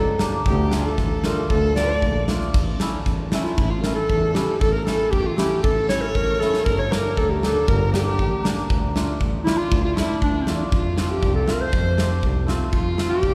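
Set in a cavernous church reverb, this festive, soulful klezmer excerpt in a straight 2/4 speeds up throughout as a dark, smooth-topped classical clarinet carries the melody over a clear, focused violin second line with vibrato, a bowed double bass that is boxy, intense and airy, a shimmering, ringing hammered dulcimer, and an up-front gated 80s drum kit with bright cymbals, a tight kick and a drum fill at 6.4 seconds, moving from D minor through A and G minor to F.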